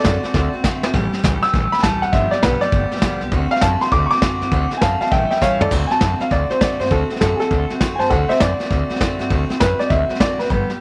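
A light studio reverb surrounds this recording, with the upright piano and the brush drum kit sitting up front. It is a rowdy, retro rockabilly passage cut from a longer piece, swinging at 201 BPM in 4/4 in D mixolydian, tuned to A4 = 435 Hz. A woody, slightly detuned upright piano carries the melody with long sustain over a bright, picked dreadnought steel-string guitar, while a thumpy pizzicato upright bass on gut strings holds the low end. The vintage kit, played with brushes in a small room, has a dark, smooth tone with a rolled-off top, a medium-tuned snare, a punchy kick, hi-hat, toms and crash cymbal, and it plays a fill at 0.3 seconds and again at 5.4 seconds. At 5.7 seconds the piano takes a solo as the harmony, moving among D7, A7 and G7, returns to D7.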